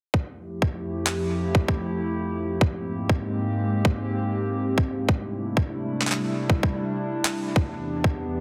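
IDM at 97 BPM in 4/4 with a light swing on the sixteenths, this short cut from a longer piece feels playful and wistful. A warbly, detuned pad built from square and triangle tones with ring modulation carries sustained chords from E2 to G4, moving from Fmaj7 to Abmaj7, C6 and Em7; its slow attack, long release, chorus and built-in reverb give it a dark, nostalgic, lo-fi colour. An overdriven, tight electronic kick drum sits up front from 0.1 seconds, re-recorded in a large room. Gritty, pitched-up sampler-style handclaps with dub echo flick in briefly at 1.1 seconds and return from 6.0 to 7.4 seconds, tape-warm and re-recorded in a small room. The whole mix is heavily compressed into a radio-like sound with light reverb.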